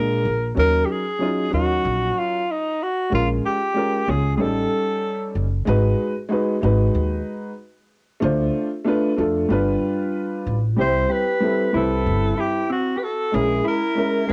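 A breathy alto saxophone carries the melody in this smoky, mellow hip hop excerpt, its vibrato-laced jazz tone sitting up front from 0.0 to 5.4 seconds and returning at 10.8 seconds, with a smooth top and a touch of plate reverb and cassette-tape coloring. Beneath it, a dark baby grand piano plays accompaniment throughout, sounding worn, boxy and intimate, with audible action noise. An upright bass, plucked and woody with steel strings, anchors the low end up front at an unhurried 94 BPM in 4/4 with a swung sixteenth-note feel. At 10.8 seconds a clean, fingered electric guitar enters quietly as a second line, its phaser adding a gentle shimmer. The harmony drifts through jazzy seventh chords, from Ebm7 and Bbm7 through A7#11 and Abm7 to a Cmaj7 before closing on Bbm7b5. The whole piece has the close, lo-fi character of a home cassette recording in a small, damp-sounding booth.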